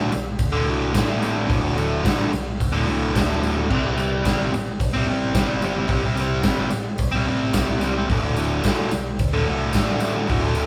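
Raw and rowdy, this garage rock cut from a longer piece drives along at 109 BPM in a straight 4/4, with a double-tracked, compressed fuzz guitar riff up front moving between D5 and C5 power chords over a dark, round, overdriven picked bass, a gritty, punchy raw garage drum kit with medium-tuned snare, hi-hat and crash cymbal entering at 0.4 seconds, and a jingly tambourine sitting close and dry in the background, all captured as a band playing live in one room with light reverb.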